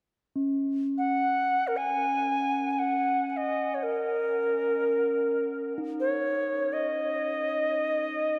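A reedy cedar flute in the Native American style sits up front, its crisp, chiffy attack and vibrato carrying a haunting melody in Eb minor pentatonic, tuned to A4 = 438 Hz, with tape echo trailing its phrases. This is meditative world music in free time, spacious and unhurried, cut from a longer piece. A quartz singing bowl enters first at 0.4 s, struck with a wooden striker to give a dark, ringing tone with slow beating that forms a low-level texture beneath. The flute joins at 1.0 s and, together with the bowl, continues to the close at 8.4 s. A cathedral reverb with a long 6.4-second decay places the sound in a vast, echoing space.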